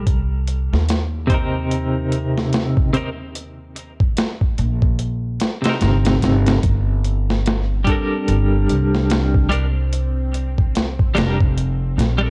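A bright, twangy twelve-string electric guitar accompanies this brooding, melancholic trip hop fragment at 73 BPM in G minor, its clean, picked playing colored by tremolo, tape echo and a filter sweep over Cm7 and Gmadd9, while a woody pizzicato upright bass and a gritty, overdriven sampler-style drum kit with a thumpy kick and swung 16ths sit up front, a tense, detuned string-like drone enters in the background at 7.7 s with phaser and vibrato, and the whole mix carries the warbling pitch drift of worn cassette tape under light reverb.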